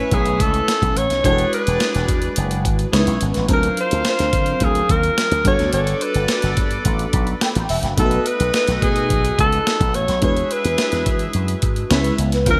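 Polished 1980s jazz-funk pop at 107 BPM with a glossy, upbeat mood, where a breathy alto saxophone with scooped notes carries the melody up front over a distant, roomy horn section on the second line, both touched with delay, while a lush, detuned FM electric piano with a soft pad layer and ensemble chorus plays the accompaniment and a fill from 6.9 to 8.0 seconds, a punchy slap bass with an envelope filter holds the low end, and a gritty, compressed breakbeat sampler-style drum kit with a thumpy kick and gated reverb enters at 0.1 seconds, all moving through chords such as Amaj9, D7alt and Gmaj9 in a bright digital production.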